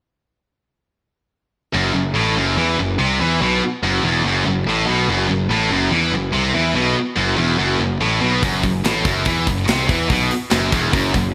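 Aggressive and epic, this heavy metal excerpt in straight 4/4 opens at 1.7 seconds with two bright, high-gain distorted guitars driving a picked riff over a growly, fuzz-overdriven electric bass sitting up front, all resting on an F# minor chord. A tight acoustic drum kit with hi-hat, kick and a medium-tuned snare arrives at 8.4 seconds, treated with gated reverb. The bright 1980s-style digital production wraps the band in a lush hall reverb with a touch of small-room ambience.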